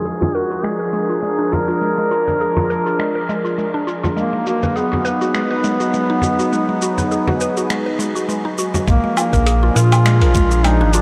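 Organic downtempo at 102 BPM in 4/4, with a gentle 16th-note swing, this excerpt from a longer piece sits in Bb phrygian dominant and carries an earthy, warm mood. A breathy, punchy duduk leads the melody up front in folk style, its scooped notes trailed by analog delay. Beneath it, a smooth, detuned sawtooth pad holds sustained chords with chorus and sidechain pumping, while a woody, mallet-like FM pluck plays arpeggios through chorus, phaser, delay and a filter sweep. A gritty, dusty soul sampler-style kit of finger snaps, hi-hat, shaker and woodblock sits low in the mix alongside a close, dry frame drum played with hard hands, which stops at 8.8 s. At 8.9 s a deep, round sine sub bass and a thumpy, compressed electronic kick arrive as the harmony returns from Abm7 to Bb7, all bathed in a dreamy, low-passed mix soaked in huge ambient reverb.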